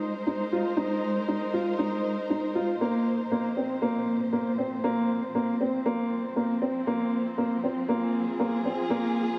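Melancholic and cinematic, this short cut from a longer piano and strings electronica piece moves at 118 BPM in 4/4, with a dark, woody upright piano riff carrying a digital delay over a close, bowed string section that sustains expressive chords with vibrato and portamento through Ab, Bbsus2 and Fm, all set in a moderate echo chamber reverb and tuned to A4 = 438 Hz.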